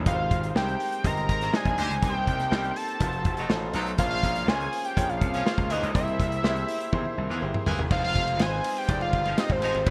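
A bright baby grand piano with subtle chorus and a gritty, overdriven slap bass open this slick, urban 1980s jazz-funk pop excerpt at 122 BPM, joined at once by a fat, nasal, detuned synth lead with chorus and vibrato carrying the melody up front and a modern studio drum kit with a tight kick and dark cymbals, while a distant, roomy horn section with light vibrato adds a second line from 1.4 seconds, the drums play a fill from 6.9 seconds, and rich chords such as Abmaj7, F7b9 and C7b13 pass beneath a polished digital sheen with light reverb.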